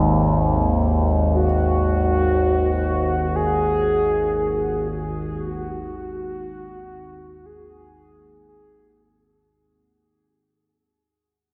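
Drenched in a cavernous cathedral reverb with a dulled top end, this ominous, desolate dark ambient drone excerpt drifts in free time and fades out across its 9.5 seconds, built on a resonant, up-front drone of sawtooth and sine tones with moving overtones, chorus and a slow attack, while a round, warbling, vintage horn-like synth lead with vibrato and delay enters at 1.3 s to carry a melody, and a dark grand piano plays mellow arpeggios, barely audible beneath.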